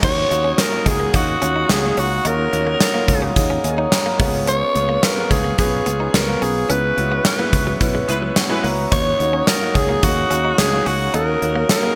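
A raspy, gritty alto saxophone carries the melody up front from the first moment, its scooped notes and vibrato touched with digital delay, over a glossy, romantic 1980s-style pop groove in a straight 4/4. Beneath it a clear concert grand piano with deep bass supplies the accompaniment and adds fills around 3.4 and 7.8 seconds, while a growly fretless electric bass anchors the low end. A gated 80s drum kit punches through with a punchy kick, medium-tuned snare, hi-hat and bright cymbals in an airy stone-room sound, and a quiet, compressed clean electric guitar picks out a riff in the middle register. High above, a glass harmonica holds ethereal, slowly blooming chords in the background, and a tight horn section adds brief delayed stabs near 8.1 seconds during a band accent. The chords move from D#m7 through C#7 and C#m7 before returning to D#m7, all bathed in a long plate reverb and a bright digital production, in a passage cut from a longer piece.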